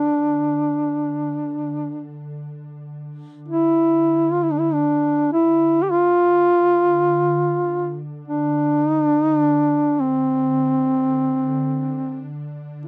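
A mellow duduk carries the solemn, mournful melody of this Caucasian folk lament in free time, its soft attack, light vibrato and scooped notes sitting up front in a solo folk style. Beneath it, an ethereal, airy pad holds a low D3 drone, its detuned, sawtooth-edged sustain thickened by ensemble chorus and its own reverb. The close, dry 1970s-style studio sound carries only light reverb, and the duduk falls silent at 12.3 seconds while the pad lingers until 12.9 seconds.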